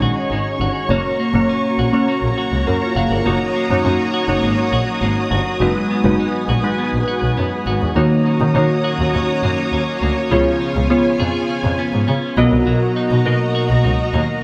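A glossy, nostalgic pop passage at 102 BPM in a straight 4/4 opens with all four parts together: glassy, detuned digital keys with a fast attack and decaying notes carry the accompaniment under a chorus effect, beside a clean picked electric guitar riff and a bowed double bass. The keys blend sine and triangle tones with a sub octave and a filter sweep. Behind them, a vintage string machine with cellos holds full, evolving sawtooth chords with a slow attack and long release, thickened by an ensemble chorus. The compressed guitar is shaded by subtle chorus and a digital delay, while the single bowed double bass sits up front with vibrato and an intense tone, stopping at 14.2 s just before the cut. The harmony moves from C#sus2 and F# into slash chords over F#, then through D#m7 and C#7 to a closing Bmaj7 in the second section from 8.0 s, all tuned slightly under standard pitch at A4 = 436 Hz and set in light reverb.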